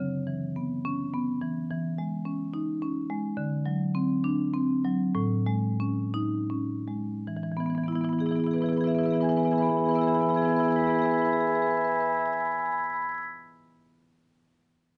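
In a lilting 6/8 with a rubato feel, the dotted-quarter pulse moves between 51 and 72 BPM and eases into a slowdown from 2.5 to 7.3 seconds. This short cut from a longer contemporary classical piece for solo marimba in E major feels flowing and playful. The marimba, struck with medium hard mallets, sounds full and close-miked, sitting up front and spanning A2 to B6. Its harmony drifts through C#m7, E6, D7 and Amaj7 in the opening section before settling on E as a second section begins at 7.3 seconds. The whole recording carries the character of worn cassette tape, with warbling pitch drift, a dulled top end and a light touch of reverb around the instrument.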